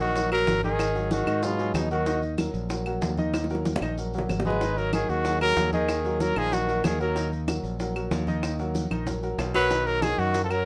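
Driving and sophisticated, this Afro-Cuban jazz excerpt moves at 188 BPM in a straight 4/4, cut from a longer piece. Trumpet and tenor saxophone play in short bursts, together from the start to 2.2 seconds and returning around 4.5 seconds, the up-front trumpet carrying the melody with a light vibrato while the breathy, whispered tenor adds a lower second line with scooped notes and a soft attack. Underneath, an intimate concert grand piano with deep bass and audible action noise accompanies throughout, and a punchy, bright fingered electric bass sits up front. Congas with a thin skin, round low-tuned bongos and woody claves keep a background pulse, with grainy, distant maracas further back, and drum fills appear near 3.3 and 8.8 seconds. The harmony shifts from Ab7 through Ab5 and Ebm to a closing Bmaj7, all wrapped in light reverb.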